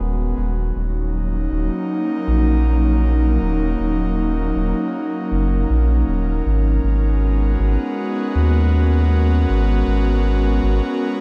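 A light reverb gives this ambient dub excerpt a spacious, deep feel at 79 BPM in a straight 4/4. An airy, breathy pad with a soft, detuned edge and chorus holds sustained chords from D#m7 to G#m11 at 6.5 seconds. Beneath it sits a round analog bass, dark and up front, that plays from the start until 10.8 seconds.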